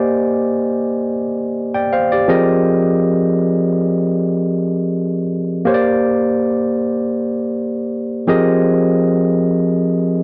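Soul in free time, this smooth, warm excerpt features a solo electric piano, barky and bright through a combo amp, up front with light reverb in a dry, close 1970s-style studio sound, moving between Bb69 and Fm11 chords across 10.2 seconds.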